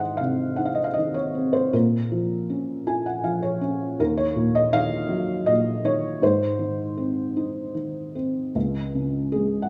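A felt-muted upright piano opens this tender, calm classical excerpt, playing solo at 79 BPM in a rubato 3/4 and tuned to A4 = 438 Hz. Up front and intimate, its dark, thick-felt tone carries audible action noise as it moves through Ab, Bbm and Ebm, spanning Db2 to Ab5 with a short fill between 2.5 and 4.0 seconds. The harmony returns to Ab before a new passage begins at 8.6 seconds on Db5, all set in a moderate recital hall reverb with a touch of small room ambience.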